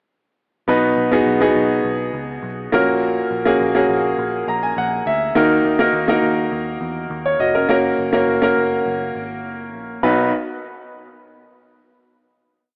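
Heard through an AM radio filter and bathed in a lush hall reverb, this short, uplifting piano-driven pop piece moves in a straight 4/4 through B, F#/A#, D#m and F#. A clear, woody upright piano sits up front with syncopated, closely voiced chords and a short fill at 4.2 seconds, while a dark, round, foam-muted electric bass sits lower in the mix with driving eighth notes, slides and chromatic approach notes. Both parts play from 0.7 to 10.3 seconds, and the reverb tail carries the final chord to the close.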